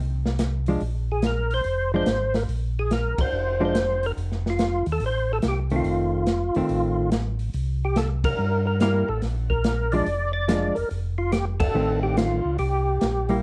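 Greasy and swinging, this soul jazz organ trio fragment rides on a round, mellow tonewheel organ bass line with key click and slow rotary speaker, under an acoustic drum kit with dark cymbals and a boomy kick. A hollow-body electric guitar adds clean, fingered, compressed accompaniment, while a fat, lightly overdriven second organ with third-harmonic percussion, chorus vibrato and slow rotary carries the melody. The band hits accents together at 3.1, 8.2 and 11.5 seconds, all captured up close with light reverb.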